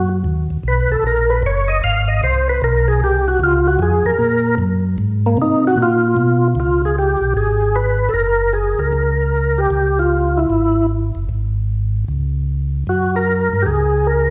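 A swinging 4/4 groove at 152 BPM with a strong swing on the eighth notes drives this bluesy soul jazz organ trio excerpt in Db mixolydian, cut from a longer piece. Two tonewheel organs carry everything: a percussive, lightly overdriven voice plays the melody and takes a solo through the first 6.6 seconds, its second-harmonic percussion, chorus vibrato and slow rotary speaker giving it a warm, full presence. Beneath it, a mellow, round, dark organ holds the bass line in a clean tone with audible key click, also turning through a slow rotary speaker. Both parts sit up front, running together for the whole 14.3 seconds. The harmony moves through Ebm, Ab, Db and Gb, with a brief break from chords partway through the second section before Gb returns. A reverberant church or concert hall surrounds the organs with a generous tail of about 1.3 seconds.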